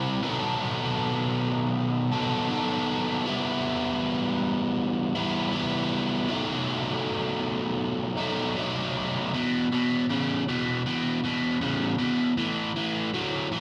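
Drenched in a large studio reverb with a live, in-the-room feel, this gritty, brooding rock excerpt in E minor at 79 BPM features a biting, overdriven electric guitar, picked and double-tracked up front with slapback echo, moving from B7 and Em chords to E5 and A5 power chords from 9.3 seconds.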